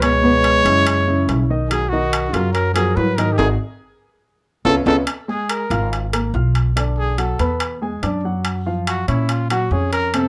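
A vibrato-touched trumpet opens this sunny, lively Afro-Cuban jazz excerpt over a dark, punchy trombone second line, short-sustain grand piano chords, growly pizzicato upright bass and ringing metal-shell timbales in a small room, with a band accent from 3.4 s and a drum fill at 4.4 s before the trombone drops out and the up-front trumpet takes a plate-reverb solo from 5.1 s.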